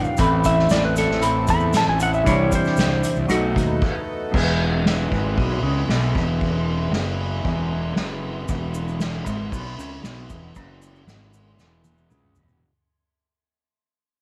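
A clean, slide-played lap steel guitar carries a melody in tape echo at the start of this hazy, trippy psychedelic rock excerpt, together with a semi-hollow guitar riff through a phaser, a round, overdriven fuzz bass, a reedy, breathing harmonium, a very quiet sawtooth drone and a grainy shaker, while a roomy soft-mallet drum kit with dark cymbals enters at 0.2 seconds; after a brief stop the music fades out from 4.3 seconds, closing on a drum fill at 11.6 seconds.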